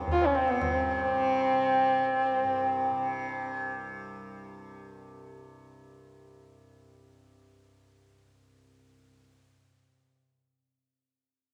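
Set in a straight five-beat cycle, this short cut from a longer Hindustani classical piece feels radiant and meditative. A bright, softly plucked tanpura hums underneath from the very start, its buzzing, shimmering drone sustaining through to 10.1 seconds. A dark sarangi, bowed by one player and placed up front, sings the melody with light vibrato and gliding portamento, its nasal, woody, boxy tone ringing with sympathetic strings until 3.7 seconds, after which the tanpura carries on alone. A low-tuned acoustic tabla with a short ring sounds only briefly at the opening, until 0.8 seconds, with a small-room character. Lush, wet hall reverb surrounds the performance, and the home cassette recording gives it an intimate, homespun quality.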